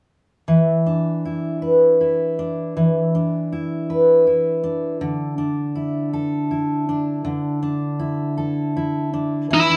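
A live band sound fills a studio room, with a glossy reverb tail lending depth. This melancholic, aching pop fragment, cut from a longer piece, moves slowly in 6/8 at 53 BPM, counted in dotted quarters with a straight feel and tuned to A4 = 439 Hz. A full-bodied, fingerpicked jumbo steel-string acoustic guitar sits up front as the accompaniment, entering at 0.5 seconds on E5 and shifting to Dsus2 at 5.0 seconds. The acoustic carries the passage alone until a bright, high-gain electric lead guitar, picked and distorted and also placed up front, arrives at 9.5 seconds on E4 as the melody. That stinging electric E4 against the rounded acoustic tone gives the brief passage its ache.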